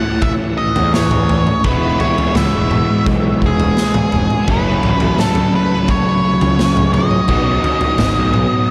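A straight 4/4 pulse at 85 BPM drives this hypnotic, hazy psychedelic rock excerpt, with an up-front garage drum kit of boomy kick, snare and toms sounding gritty and saturated in a bright stone room, while a fuzz-soaked, punchy electric bass joins in the background at 0.8 s. A double-tracked, cranked stack guitar plays a bright overdriven riff through a rotary speaker, and a dark octave-fuzz lead guitar carries the melody with distortion and delay over chords moving from A to E, F#m and B. A huge ambient reverb gives the whole mix a dreamy, drenched haze.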